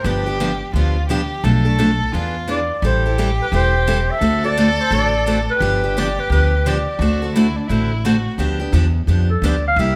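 A breathy, subtone clarinet with vibrato carries the melody in this lively, charming acoustic string swing at 173 BPM in G mixolydian, taking a solo at 8.4 s as the bowed violin's woody second line ends, while a bright picked steel-string acoustic guitar and a thumpy pizzicato upright bass on gut strings sit up front in a moderate large-studio reverb, the band heard playing live in one room.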